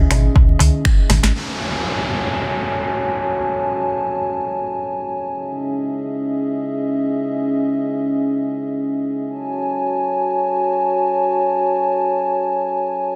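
In free time, this hypnotic afro house passage opens with a brief burst of rhythm: a deep, up-front electronic kick drum, an afro-pop drum kit with finger snaps, metallic hats, a sharp, softly clipped snare and toms, plus low-tuned congas in the background and a small, high clay-shell darbuka, all ending with a band accent and a drum fill by 1.3 seconds. A round sine sub bass pumps under the opening C#m chord, while a dark, nasal, detuned analog pad with chorus and sidechain pumping holds moody sustained chords through to 13.2 seconds. After the percussion falls away, the pad shifts between F#m and C#m, and an electronic downlifter sweeps through from 1.3 to 5.3 seconds, all within a dense, heavily limited master and a moderate plate reverb.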